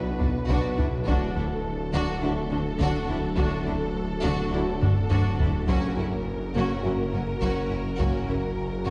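A brooding, tense hybrid orchestral and electronic film score cue at 104 BPM, this short excerpt moves from B minor through D to F# over a menacing, saturated detuned saw bass and a heavy, close solo taiko part that breaks into a fill at 4.8 seconds. Lush bowed strings carry it, with a warm violin section on the melody, a bright, close second violin line, a rich chamber viola accompaniment and a rich cello and clear double bass section underpinning the low end. A very quiet dark French horn section, a soft-attack trombone section and an ethereal, airy pad with a slow attack hold sustained chords, all set in the wet reverb of a scoring stage and heard from further back in the room.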